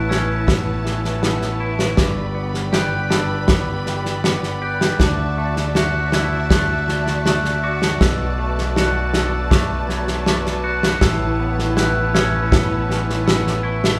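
A loose indie drum kit sets a straight 4/4 pulse at 80 BPM, entering at 0.1 s with a tight kick and medium-tuned snare placed up front, in this cinematic, melancholic post-rock passage cut from a longer piece and tuned to A4 = 441 Hz. A growling, overdriven fingered bass sits low and forward, a clean, twangy electric guitar picks arpeggios through spring reverb, a bell-like glockenspiel struck with soft plastic mallets rings out high arpeggios, and a rich string section sustains smooth, bowed chords with vibrato. The band plays live together in one large studio room, moving through Aadd9, G, Dadd9 and Bm7 before returning to Aadd9 at 11.0 s.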